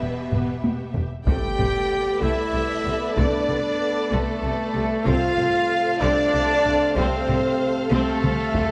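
The French horn section stands out most, holding smooth, warm sustained chords with light vibrato in this majestic, heroic orchestral film cue in a slow, swaying 6/8, cut from a longer piece. Above it, a focused symphonic violin section carries the lush melody, joined by a dark, soft-attacked second violin line and a distant, expressive viola accompaniment, all bowed with vibrato. The low end rests on a clear, close chamber cello section and a smooth, even double bass section. A taiko ensemble played with hard sticks sits in the background from 0.3 seconds, with drum fills opening the cue and returning near its close. At 1.3 seconds, as the harmony moves off E minor, a huge, dark impact rumbles until 3.2 seconds, while a mellow, roomy solo trumpet adds stabs. A soft-attacked trombone section, entering just before at 1.2 seconds, fills in sustained chords beneath. The whole ensemble sits in the wet reverb of a scoring stage.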